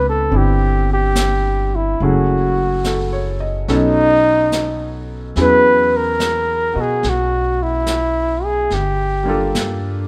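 A light reverb gives this short jazz ballad fragment an intimate, tender glow, set at a slow 72 BPM in 4/4 with a gentle swing on the eighth notes. Up front, a mellow flugelhorn carries the melody with a soft attack and light vibrato, singing in a compact middle register. Beneath it, a clear, smooth concert grand piano with a vintage character and deep bass supplies the accompaniment, while a woody pizzicato upright bass with steel strings sits close and present in the low end. A vintage brush drum kit joins at 0.3 s, its medium-tuned snare, brushed snare and hi-hat sounding distant and roomy with a rolled-off top. The harmony drifts from Cmaj9 through F#m9 and B7 to a lingering E69 before turning to Gm7 near the close.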